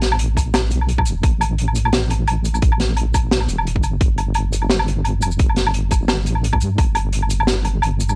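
Half-time drum and bass at 173 BPM in 4/4, this tense, heavy excerpt carries a light swing on the sixteenths and runs about 8.2 seconds. A deep, soft wobble bass anchors the low end from E1 to G2, its detuned sawtooth and sine tones dark, compressed and sustained, with a fast attack and a chorus effect. An open jazz drum kit plays throughout, with hi-hat, shaker, woodblock and a high-tuned snare heard in an acoustic studio room and placed up front. An electronic kick drum enters at 0.4 seconds and stops at 6.9, a tight, layered, produced thump with a tape-warmed edge that sits forward in the mix. The sound is dry and gritty, with little reverb and the texture of hardware and cassette tape.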